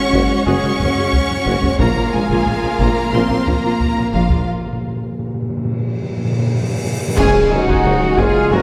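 Hard-struck taiko drums drive this epic, dramatic orchestral film cue, beneath a focused, vibrato-rich violin melody supported by a softer second violin line, very quiet violas, a lush bed of sustained strings, and cellos, double basses and a distant tuba anchoring the low end. Mellow French horns, very quiet trombones and dark trumpet stabs fill out the brass, while round, soft-mallet timpani play a fill from 1.8 s. At 4.5 s, bright clash cymbals, a cymbal swell and concert bass drum build a break, and a huge sound-effect impact lands at 7.2 s as an airy flute joins, all bathed in the generous reverb of a concert hall.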